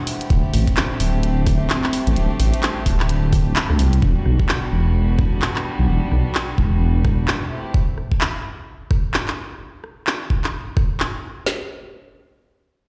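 UK garage in a two-step vein at 129 BPM with a swung 16th-note feel, this moody, soulful excerpt moves through D9sus4, Em9 and Am7. Soft, floating violin section chords and a warbling, nostalgic lo-fi pad both pump under the sidechain, the pad stopping at 4.0 s, while a deep, rumbling detuned saw bass sits up front. Layered electronic drums bring a tape-warm, knocking kick and woody snare along with claps, hi-hat and rim click, heard as if through a big sound system in a bare room with large reverb, and they carry on alone once the strings stop at 7.7 s.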